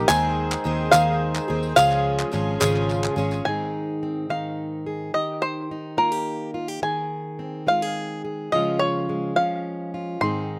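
A twangy bluegrass banjo carries the melody up front throughout this short indie folk excerpt, its bright, percussive fingerpicked tone doubled by a slapback echo. The piece moves in a gentle 6/8 at 71 beats per minute in Ab major, with a nostalgic yet uplifting mood. For the first 3.5 seconds the banjo is joined by a shimmering, octave-doubled twelve-string acoustic guitar with its own slapback echo and audible finger squeak, a reedy, breathing harmonium holding chords, a round, foam-muted electric bass, crisp group handclaps and a very quiet, jingly tambourine. At 3.5 seconds that fuller backing drops away and a fingerpicked plugged-in steel-string acoustic guitar takes over the accompaniment, leaving a sparer pairing with the banjo as the harmony cycles through Ab, Eb and Db. The sound is close and dry, recorded outdoors with little reverb, so the picking detail comes through plainly.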